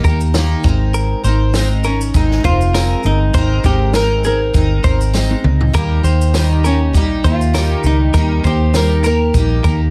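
A round, dark, foam-muted electric bass sits up front in this sunny, easy-going acoustic pop excerpt in Ab major, moving at 100 BPM in 4/4 with a light swing on the sixteenths. A double-tracked steel-string acoustic guitar with a full-bodied dreadnought tone and audible finger squeak carries the accompaniment, while a clean, compressed electric guitar, recorded direct, plays arpeggios bathed in plate reverb. A fingerpicked flamenco guitar enters at 1.9 seconds with the melody, its warm lines also touched by plate reverb. A compact cocktail drum kit, dry and natural with a punchy kick and high-tuned snare, works kick, snare, shaker and toms, adding a fill from 5.1 to 5.7 seconds, and a jingly, band-limited vintage tambourine sits in the background. The harmony moves from Eb to Abadd9 and back to Eb, all within a light reverb.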